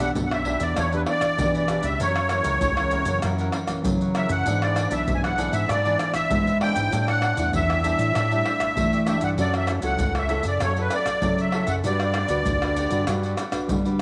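Festive and lively, this samba and choro fragment, cut from a longer piece, moves in a straight 4/4 over a chord sequence that runs from Em7 through F#7, E7, A7sus4 and F#m7 to Gmaj7. A reedy musette accordion carries the melody up front, its shimmering musette tuning sitting in the upper register until it drops out at 13.0 seconds. Beneath it, a dark, fingerpicked nylon-string guitar with a classical touch and a crisp, picked cavaquinho in the background fill out the accompaniment. A fingered electric bass, overdriven into a round, fuzzy growl, anchors the low end with a direct, amped tone. Maracas, pandeiro, tamborim and a deep surdo enter at 0.2 seconds with a vintage, band-limited acoustic colour, and the whole ensemble sits in a moderate echo-chamber studio reverb.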